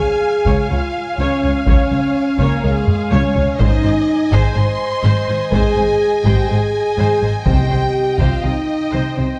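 A straight 4/4 pulse at 124 BPM drives this dramatic, relentless stretch of epic orchestral film score, cut from a longer piece, with a taiko ensemble playing heavy sticks from 0.5 seconds and a drum fill at 2.9 seconds. Up front, a dark, distant French horn section holds sustained chords over a harmony that moves from Db to Ab and then to C minor. The lead violin section carries the melody with vibrato, a soft attack and a lush, expressive tone, while a second violin section adds a rich, even line and violas fill in focused, bowed accompaniment. Cellos and double basses anchor the bass, the basses sitting in the background with a close, portamento-tinged sound. Timpani struck with medium mallets enter briefly at 7.5 seconds on C3, and the whole piece sits in a moderate scoring-stage reverb with a warm, shadowed production.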